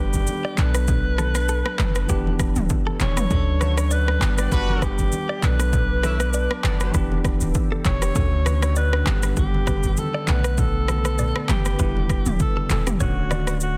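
Breezy and sunny, this afrobeats excerpt rides a lightly swung groove of punchy, overdriven deep house drums with handclaps, rim clicks, shaker and toms, a boomy, sine-toned 808-style bass up front, and very quiet, thin-skinned congas. A smooth alto saxophone with vibrato and delay carries the melody over bell-like tine electric piano accompaniment, a clean direct-recorded electric guitar riff with spring reverb and delay in the background, and a very quiet, dark, detuned ambient pad cycling through G, Bm7, Em7 and Dmaj7. A warm horn section adds a second line from 3.6 to 6.9 seconds, and the mix is dry, dense and heavily limited.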